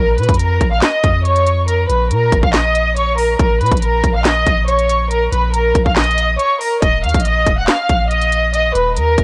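The recording is dry and gritty, with a close, hardware-driven sound and very little room around it. This is a dark, melancholic trap beat in a half-time 4/4 feel, cut from a longer piece. A bowed violin section carries the melody from the first moment: a woody ensemble tone with vibrato and a soft attack, shaded by a low-pass filter and trailed by tape echo. A deep, sine-like 808-style bass sits beneath it with a fast attack and long, mellow, decaying notes, while the electronic drum kit enters at 0.2 s with a hard-clipped kick, sharp snare, crisp hi-hats and handclaps roughened by vintage 12-bit sampler grit. The harmony rests on Bbm before shifting to Eb5 at 6.8 s, holding the brooding, shadowy mood through to the end at 9.2 s.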